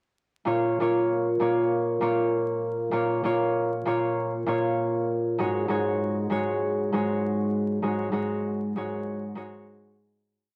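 A swung sixteenth-note lilt in 4/4 gives this short, dark and reflective hip hop piece its loose, head-nodding sway. A lone concert harp carries everything from 0.5 seconds, fingerpicked and ringing, its chopped chords repeating like a sampled loop that sits up front in the mix. The harmony rests on a B-flat minor chord before shifting to an A-flat seventh suspended-fourth chord at 5.4 seconds. Filtering and cassette-tape coloring soften the harp's edges, while vinyl crackle, light reverb and the feel of a home cassette recording lend a dusty, lo-fi intimacy. The whole piece is a single hook that begins fading out at 7.8 seconds.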